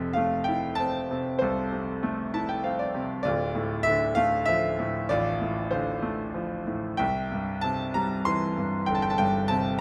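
A bright, brilliant grand piano sits up front in this short cut from a longer classical piece, a lyrical solo in D minor at 97 BPM in 3/4, played with a rubato feel and a bittersweet, cool mood. The piano spans a range from D1 to C6, adds a fill between 2.0 and 3.2 seconds, and moves through Fmaj7, Dm7 and C7 harmonies. Its natural tone is framed by a moderate recital hall reverb with a 1.4-second decay.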